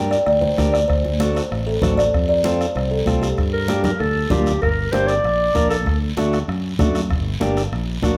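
A mellow, subtoned clarinet with light vibrato and scooped notes enters at 3.5 s to carry a jazz-style line as the key shifts to G harmonic minor at 4.6 s, following a woody, hollow kalimba melody that rings until 4.3 s, over vintage combo organ chords, an up-front fingered electric bass, a soft-beater bombo, a raspy, saturated guiro and bright, thin-skinned congas in the background, all giving this danceable, fiery cumbia at 193 BPM in G minor the feel of a band playing live in a large studio room.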